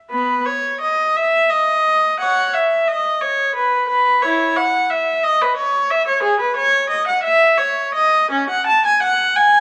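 Classical baroque-style suite movement for unaccompanied viola, a flowing, dance-like fragment in a rubato 6/8 where one bowed player with a rich, reedy gut-string tone and light period-style vibrato plays alone from 0.1 to 9.6 seconds, set in a moderate recital-hall reverb beneath a layer of vinyl crackle.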